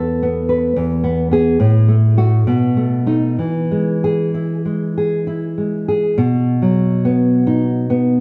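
A moderate reverb, like that of a scoring stage, surrounds this short passage cut from a longer piece, giving the close, up-front guitar a soft halo of space. It is a tender, romantic work for solo classical guitar in E major, moving in 3/4 at roughly 62 to 75 BPM with a flexible rubato feel. The nylon-string guitar sounds warm and fresh-stringed, its thumb-plucked tone rounded and intimate as it spans from E2 up to B4. The harmony opens on Esus4 and settles onto E, then passes through F#m/A and B7 before returning home to E at 3.4 seconds. At 6.2 seconds a new section begins on a B chord, carrying the phrase onward until the passage breaks off at 8.2 seconds.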